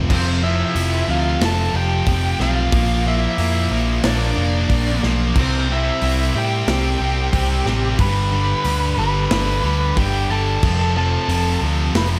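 A straight 4/4 pulse at 91 BPM drives this energetic, anthemic hard rock excerpt, where a tight metal drum kit with a tight kick and rolled-off top supports a growly, up-front overdriven picked bass and a riff built from an overdriven hollow-body semi-hollow guitar and two bright, tight distorted guitars, one of them double-tracked and very quiet. Above them, a dark, smooth lead guitar carries the melody high while a biting lead guitar plays a second line beneath it, both treated with overdrive, slapback echo and digital delay, over chords moving F5, Bb, C, G and back to F. A moderate scoring stage reverb with small room ambience gives the whole 12.2 seconds a big arena sound.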